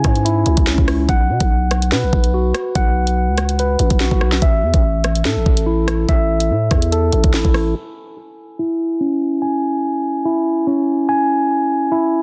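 A half-time drill groove at 144 BPM in C# minor opens this dark, cold hip hop excerpt, with an overdriven electronic kit of knocking kick, sharp snare, rim click and warm hi-hats set up front beside a growling, buzzy 808-style sine bass with a fast attack and decaying tail, while mellow, clean tine electric piano arpeggios run through a low-pass filter and digital delay; the drums stop at 7.6 seconds and the bass at 7.7, leaving the piano alone under a filter sweep until 12.2 seconds, all set in digital ambience with a dense, heavily limited modern master.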